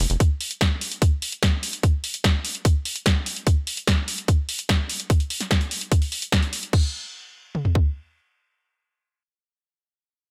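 Psychedelic trance at 147 BPM in a straight 4/4, this hypnotic fragment sets an overdriven techno kit of crash cymbal, hi-hat and punchy snare, heard up front until 6.8 seconds, alongside a garage kit whose tight, layered kick and toms run from 0.2 to 7.8 seconds, all bathed in a digital ambience.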